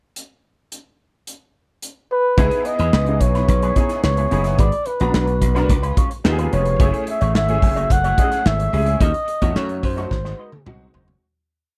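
A dry, close studio sound frames this short, polished piece of 1980s jazz-funk pop in C# minor, moving at 109 BPM in a straight 4/4 with a nocturnal, urban mood. A modern studio drum kit opens alone at 0.2 s with a pickup bar, its punchy kick, medium-tuned snare, hi-hat and toms playing a crisp sixteenth-note groove in a pumping room sound, up front. At 2.4 s the verse arrives as a bright, punchy slap bass enters with an agile syncopated line, joined by a clear, intimate grand piano playing rootless syncopated chord stabs with grace notes and audible action noise, treated with ensemble chorus. Tucked in the background, a twangy, compressed electric guitar runs through an envelope filter and analog chorus for a clean, picked sixteenth-note rhythm part. Entering slightly earlier at 2.1 s, at the end of the pickup bar, a breathy, mellow flugelhorn carries a motif-based jazz melody with scooped notes, light vibrato and a slapback echo, moving through chords from C#m7 and G#m7b5 to F#m7, D#m7b5 and G#7. 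The piece fades out from 9.0 s as the drums close with a fill.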